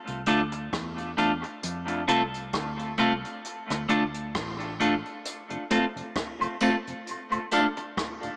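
This short dub reggae excerpt sits at a slow 66 BPM in 4/4, with a lazy swing on the sixteenths and a spacious, deep mood. Jazz drums played with brushes open it from 0.1 s, giving hi-hat, rim click and a boomy kick in a natural small-room sound, while a dark, foam-muted fingered electric bass adds round, punchy low notes until it drops out at 5.0 s. A clean, picked electric guitar sits up front and louder than the rest, trailing dub echo over harmony that moves between F and D minor. From 5.5 s a soft, flute-like tonewheel organ with vibrato and a stopped rotary speaker joins, followed at 5.7 s by tambourine and woodblock percussion with maracas and group handclaps. The echo-heavy mix, bathed in a moderate plate reverb, has a small-speaker character.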